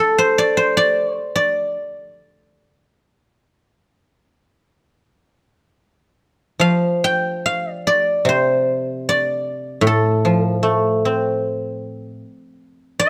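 Elegant and longing, this short passage of Chinese traditional music features a solo guzheng that sits up front and plays throughout its 13.1 seconds. The tempo moves freely in a rubato feel somewhere between 66 and 79 BPM, loosely in 4/4, in the D yu mode. Played with fingerpicks, the guzheng's acoustic tone is silvery and ringing, ranging from A2 up to G5. The music falls into two parts, with a new section arriving at 6.6 seconds. Close, detailed microphones and a light reverb give the instrument an intimate presence in this fragment cut from a longer piece.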